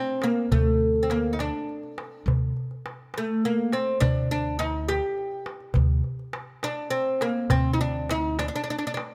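Melancholic and longing, this short fragment of an Arabic maqam ensemble in 6/8 puts a woody, fretless oud up front, its double strings plectrum-plucked for the melody, over a pizzicato upright bass with steel strings and a clay-shell darbuka with natural skin played by soft hands, captured by close, detailed microphones in light reverb.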